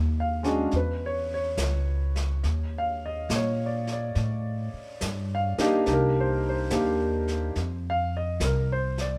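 This jazz ballad, cut from a longer piece, moves at a slow 70 BPM in 4/4 with a swung eighth-note feel and an intimate, romantic mood. The upright bass opens at 0.0 seconds, plucked and up front, with a woody, growly tone from its steel strings. A concert grand piano follows at 0.2 seconds, also close in the mix, carrying the accompaniment with deep lows and audible action noise that adds to the natural, close-up sound. The brush kit enters at 0.4 seconds, quieter than the other two parts, with brushes on a medium-tuned snare and hi-hat that give a natural, small-room character. The harmony moves from a rootless Cdim through Dbm7 and Ebmaj7#11 to Cm7 before settling on F5. A moderate large studio reverb surrounds the ensemble.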